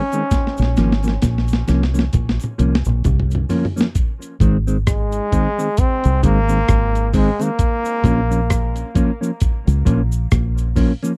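Sunny and laid-back, this short roots reggae excerpt, cut from a longer piece, sets a brilliant, present trombone melody with light vibrato and dub echo over a mellow, clean electric guitar also treated with dub echo, a deep, round fingered bass that sits up front, a gritty, thumpy, tape-warm breakbeat kit whose fill runs from 0.3 to 4.0 seconds, and a cabasa tucked in the background, all captured in a dry, close 1970s-style studio sound as the chords move from Bbm to Ab and back.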